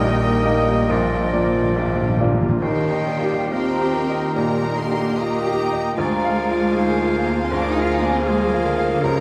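In a rubato 4/4 that drifts between 64 and 80 BPM, this passionate, lyrical romantic movement for piano and orchestra unfolds in Eb major, cut from a longer piece. A clear, intimate baby grand piano carries the melody up front, its action noise audible and its notes ringing with long sustain, while a lush violin section also carries the melody high in the background. A bright, airy flute ensemble, a vintage-toned oboe, a distant clarinet and a second, focused violin section weave second lines, and a dark, very quiet viola section and a mellow bassoon fill in the accompaniment. Shadowy French horns hold sustained chords throughout, joined by a soft-attacked trombone section until 2.3 seconds, as cellos and a smooth, even double bass section anchor the bass. Close, dry timpani struck with hard mallets play a fill from 0.9 to 2.6 seconds, and a wet concert hall reverb gives the orchestra a generous sense of space.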